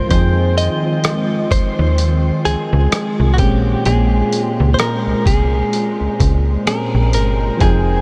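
A snappy, metallic slap-like FM bass sits up front in this sensual, moody contemporary R&B excerpt at a slow 64 BPM with a swung 16th feel, moving from Fm7 to Bbm7 at 3.4 seconds. A gritty, tape-warm sampler-style drum kit with a thumpy kick, hi-hat and rim click keeps time alongside a clean, direct-recorded electric guitar melody treated with tremolo and tape echo. Round, mellow electric-piano-like synth keys with chorus and a hollow, flute-like, warbling pad with ensemble chorus and sidechain pumping fill out a dreamy mix soaked in a huge ambient reverb.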